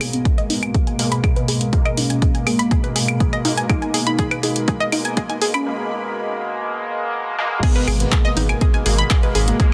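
Driving, dramatic melodic techno at 122 BPM in G# minor, this excerpt builds with filter sweeps over a moody, dark analog pad in the background, a mellow, fat detuned sawtooth lead with vibrato and dub echo, round plucked arpeggios with tape echo, and edgy, nasal oscillator-sync polysynth stabs, all pumping against an overdriven, punchy up-front kick and an overdriven analog drum machine of claves, handclaps, hi-hat and crash cymbal that plays a fill before a break at 5.7 seconds, then the drop arrives at 7.6 seconds and a menacing, saturated detuned saw bass swells in at 7.9 seconds, all within a dense, heavily limited mix with light reverb.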